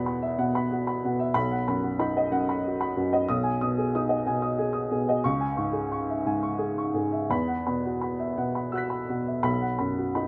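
A rubato 6/8 pulse drifting around 54-64 BPM carries this tender, peaceful neoclassical minimalist piano excerpt in B major, where a solo upright piano, woody and up front, spans B1 to B6 through Esus2, B, G#m/B and C#m before settling back on B at 9.5 seconds, all in light reverb and a small room ambience of a rough home demo.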